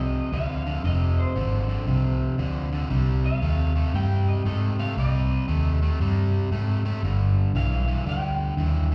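Electric blues shuffle with a soulful, smoky mood, cut from a longer piece, where a slightly broken-up, lo-fi guitar through a small old amp carries the melody with subtle chorus and slapback echo over a bright, crunchy overdriven guitar riff and a dark, round, foam-muted fingered bass sitting up front, all heard as a live gig through the venue's PA in a recital hall while the chords move from Fm7 to Cm to G7.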